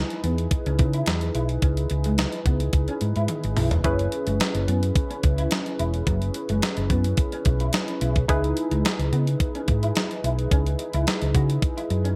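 Early-eighties boogie funk with a funky, late-night mood, cut from a longer piece, where a thumpy, sampler-style 12-bit drum machine with gated reverb and a round, punchy hollow-body fingered bass sit up front under a sawtooth polysynth comp with a filter pluck and chorus, while a dark, slightly broken-up electric guitar riff with ensemble chorus lingers in the background, a drum fill at 3.3 seconds leading into a new section at 3.8 seconds that shifts from C#m9 to F#7sus4.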